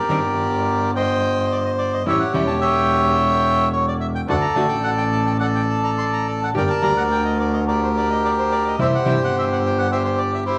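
A reedy, dark bandoneon carries the melody up front in this melancholic, passionate tango fragment with a free rubato feel, over an earthy bowed double bass with light vibrato and a fingerpicked classical nylon-string guitar that drops out at 9.2 s, all set in a large studio reverb with vinyl crackle.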